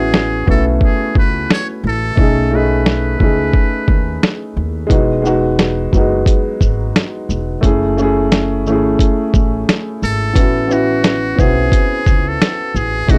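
Swung sixteenths at 88 BPM in 4/4 carry this nostalgic, melancholic lo-fi hip hop excerpt, where a compressed, muffled sampler-style drum kit with a thumpy kick sits up front beside a dark, mellow upright piano with long sustain and plate reverb, a woody pizzicato upright bass adds tube saturation underneath, and a buzzy, breathy metal-muted trumpet plays a jazz-style solo melody from 0.0 to 4.5 seconds and again from 10.0 seconds, over a gritty, dry hardware sound with light reverb.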